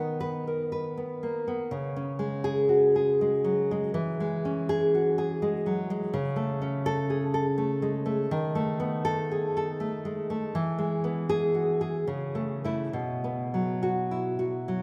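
Moving in a rubato 3/4 at 66-85 BPM, this tender, nostalgic romantic piece for solo classical guitar, cut from a longer work, features a full-bodied, fingerpicked nylon-string guitar sitting up front across its 14.8 seconds, ranging from B2 to B4 and bathed in the long, wet cathedral reverb of a church or concert hall.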